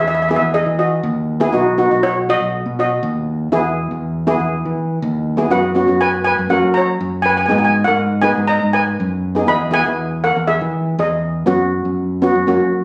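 Calypso at 121 BPM in a straight 4/4, carefree and bouncy, cut from a longer piece with a lead steel pan struck with medium rubber sticks carrying a dark, shimmering melody until 11.3 s over a mellow double-seconds pan playing soft accompaniment from 0.3 s. Beneath them a growly, overdriven fingered electric bass runs through the whole 12.8 seconds, sitting up front alongside both pans. Chords move through Emaj7, B, F#sus4, F# and G#m7, and the phone-in-the-room capture adds moderate studio reverb and compression, with the tuning set at A4 = 435 Hz.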